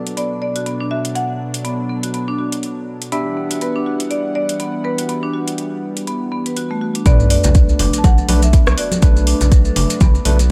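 A woody, close-miked marimba melody leads this earthy, driving afro house cut in B minor at 122 BPM, set over a second, filtered marimba's echoing arpeggios, a smooth, detuned analog pad, clean tine electric piano stabs and a metallic-hatted afro-pop kit with rim clicks, before the drop at 7.1 seconds brings a deep, up-front electronic kick, a round, dark analog bass pumping against it, ringing background congas, grainy vintage maracas and a very quiet sub drop.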